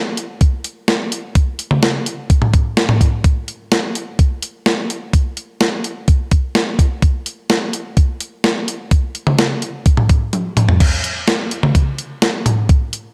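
Pop, cut from a longer piece, set in a melancholic yet driving mood at 127 BPM in a straight 4/4. The only part is a clean 12-bit digital drum machine with an electronic, sampler-style character, entering at 0.2 seconds and sitting up front in the mix. Its kit covers crash cymbal, hi-hat, thumpy kick drum, medium-tuned snare drum and toms, carrying a tape-warm grain and gated reverb. A drum fill arrives at 10.3 seconds, marking the move into a new section that runs until the drums stop at 13.0 seconds. The whole track sits in a moderate recital hall reverb with a 1.8-second decay, giving the machine hits a sense of space around them.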